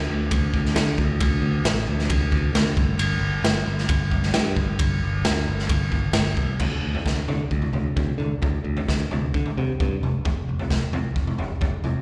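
Driving along at 132 BPM in a straight 4/4, this short cut from a longer quiet-loud alternative rock piece carries an angsty, brooding mood. A bright, growly picked electric bass opens alone, sitting up front with a direct, punchy attack across its range from F1 to D3. The raw garage drum kit joins at 0.3 seconds, its crash, ride, kick, snare and toms sounding saturated and gritty, with a punchy kick, a medium-tuned snare and a rolled-off top. The kit also sits up front, breathing in a small, pumping room. The passage moves from its first section into a second at 6.6 seconds, heard as a live gig through the venue's PA with a recital-hall reverb around it.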